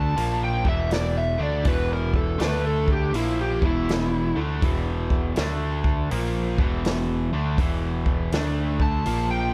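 A swung 4/4 groove drives this gritty, brooding fragment of blues rock and southern rock, with a vintage acoustic drum kit's punchy kick, snare and hi-hat entering at 0.2 seconds in a natural small-room sound. A bright, crunchy, double-tracked guitar riff sits up front over the alternating E5 and D5 chords, anchored by a growling, round picked bass with overdrive. A dark, overdriven slide guitar played with fingerpicks carries the melody through tape echo until 4.4 seconds and returns at 8.8 seconds, all in a dry mix with little reverb.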